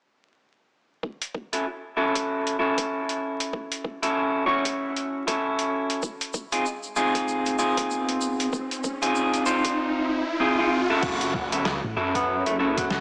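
Wrapped in vinyl crackle, a small-speaker tone and a lush hall reverb, this gritty, swaggering glitch hop excerpt at 96 BPM swings its 16ths over F#m7 and a rootless C#maj9 with a thumpy, pitched-down electronic kick and a compressed boom bap sampler kit of crash, hi-hat and medium-tuned snare, while clean, up-front electric guitar stabs pump against the sidechain through a low-pass filter and tape echo, a grainy tube shaker drifts in briefly, an electronic riser builds from 7.9 s, a swirling, overdriven detuned saw bass arrives at 11.0 s, a round, dark fingered electric bass follows at 11.8 s, and a clear, forceful tenor saxophone with vibrato and scooped notes takes a jazz-style solo from 12.1 s.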